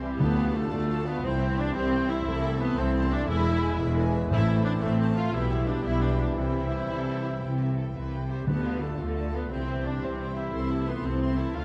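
Rolling in a lilting compound metre, this brief cinematic cut from a longer piece has a swashbuckling, adventurous spirit, its harmony moving through D minor, C and A minor with a bright turn to E before circling back to D minor. Lush bowed cellos and double basses anchor the bottom, the basses up front and expressive, the cellos smooth and distant, while a clear, focused viola section carries the accompaniment in the middle. A rich violin section sings the melody from the background, with a soft-attacked second violin section, a mellow, hollow small flute group, a distant oboe and a dark, smooth-topped clarinet weaving secondary lines around it. Very quiet French horns and roomy trombones hold sustained chords beneath, and timpani struck with medium mallets sound at 0.2, 4.3 and 8.5 seconds. A moderate concert hall reverb gives the dark, warm production a sense of space.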